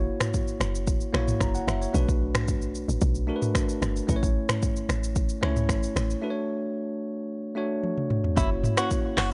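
Afrobeats with a hypnotic, mellow mood, this short cut from a longer piece moves in a straight four at 112 BPM. A bell-like tine electric piano carries the chords from the start, upfront and clean, cycling through F#7, Bm7, A and Dmaj7. Beneath it, a deep log drum bass gives round, percussive, dark notes with a fast attack and a noisy FM edge. An electronic afro-pop kit enters at 0.2 seconds with a deep kick, metallic hats, finger snaps, handclaps, rim clicks, shaker and toms, sitting up front with a tape-warm tint. After a break from 6.2 seconds and a short drum fill, a bright, scooped, direct-recorded clean electric guitar picks out a brief melody at 8.4 seconds as the chords return to F#7. The whole sounds dry and gritty, with a dulled top end and a digital ambience.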